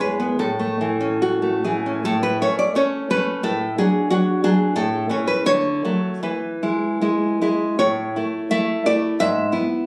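A romantic piece for solo classical guitar in A major, this short excerpt has a warm, nostalgic mood and a rubato feel in 2/4, drifting between 70 and 93 BPM. The fingerpicked nylon-string guitar sits up front with a dark, full-bodied tone, ranging from E2 to E5, with audible finger squeak and a deep classical character. The phone recording in the room carries light club reverb and compression, and the harmony moves from A through D and E before reaching E/G# at 9.2 seconds.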